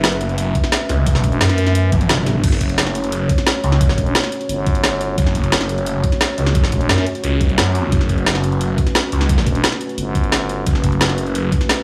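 Dark technical drum and bass at 175 BPM in F# phrygian, this tense, futuristic passage from a longer piece opens straight into a drop, with a moody, nasal analog pad holding chorused chords over a swirling, thick detuned saw bass that is phased, overdriven and pumping up front. An overdriven kit with a woody snare and bright hats drives alongside a knocking electronic kick that enters at 0.6 seconds, while a faint, blurred granular cloud pad ends at 2.4 seconds, as a drum fill from 1.9 seconds closes. A growling FM bass cuts in at intervals, notably from 4.0 to 7.1 seconds, all set in a light digital ambience.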